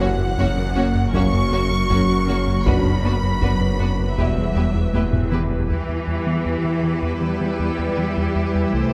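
Set in a moderate concert hall reverb, this short cut from a longer cinematic score blends a symphonic string body with electronic layers for a tense, futuristic mood in a straight 4/4. Bowed violins carry a lush, vibrato-rich melody until 5.3 seconds, while a second violin line and a viola section in the background add intense support beneath it. A calm, detuned organ-like drone holds sustained chords with ensemble chorus and its own reverb, and a soft, ringing harp-like synth pluck spins arpeggios through chorus and digital delay. The low end stacks a rich, distant cello section, a very quiet double bass section, a rubbery, hollow square bass riff, and a deep, saturated sub bass that drops out at 5.7 seconds. A very quiet taiko ensemble with heavy sticks enters at 0.4 seconds and plays a fill just before the second section, while a dark, roomy French horn section and a barely audible, mellow trombone section hold brief sustained chords. 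The harmony moves from F# through Bm/F# to Em.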